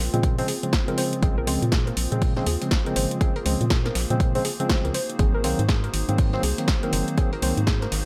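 Deep house in Bb minor at 121 BPM, this moody, hypnotic excerpt rides a swung 4/4 groove from a longer piece, moving from Bbm9 to Ab9 at 4.9 seconds. An overdriven electronic kick sits up front, deep and re-recorded in a large room, alongside a layered deep house kit with a punchy snare and metallic hats that shares that overdrive, while a gritty, compressed sampler-style soul kit lurks in the background with filtered hats and snare, its hats pumping to the sidechain. An organ-like FM bass, hollow and dark with a fast attack and decaying notes, pumps underneath from Gb1 to Bb2. A bright, clean tine electric piano plays stabs through tape echo, and a mellow, flute-like pad holds sustained chords with chorus, both breathing with sidechain pumping. A soft, round pluck adds background arpeggios between Ab4 and C5 with chorus and delay, and the whole mix stays fairly dry.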